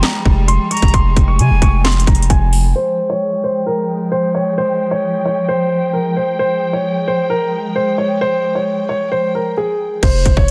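Densely limited in a small, lightly reverberant room, this brooding, menacing half-time trap fragment sets a dark, mellow grand piano melody, its action noise audible through filtering and delay, over lush bowed strings holding sustained chords, with a brief breathy, bright flute line near the start, while hard-clipped, overdriven drums and a deep sine 808 bass fall away before a filter sweep from 2.8 seconds and return at 10.0 seconds.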